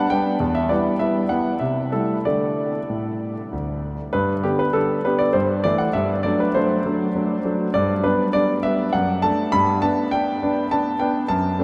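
A close, intimate concert grand piano with audible action noise and deep bass plays a playful, graceful classical-period sonatina fragment alone in a rubato three-four lilt, its opening phrase giving way to a new section at 4.1 seconds, all bathed in a huge, wet reverb that makes it ring as if in a vast, echoing hall.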